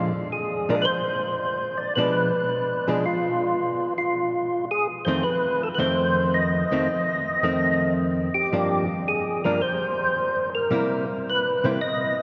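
A swung 4/4 groove carries this greasy, bluesy jazz excerpt, with a fat, percussive tonewheel organ up front playing the melody through a slow rotary speaker and chorus vibrato, its key click and third-harmonic percussion clearly audible. A dark, compressed hollow-body archtop guitar, miked through an amplifier, picks a clean accompaniment alongside through changes from Bb7 and Bdim7 to F7, Gm7 and C7, and it drops out at 11.8 seconds, just before the organ ends at 12.2. Everything sits in a drenched cathedral reverb with a long, dull-topped tail that gives the recording a church-hall spaciousness.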